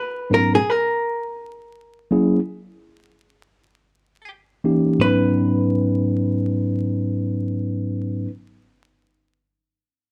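A hollow-body archtop guitar opens this nocturnal, smoky hip hop excerpt with a dark, compressed, picked melody bathed in plate reverb, joined at 0.3 seconds by a mellow, clean tine electric piano sitting up front on lush minor eleventh and ninth chords, the two carried by a gently swung sixteenth-note feel in a small room, with a dim, cozy production dusted with vinyl crackle.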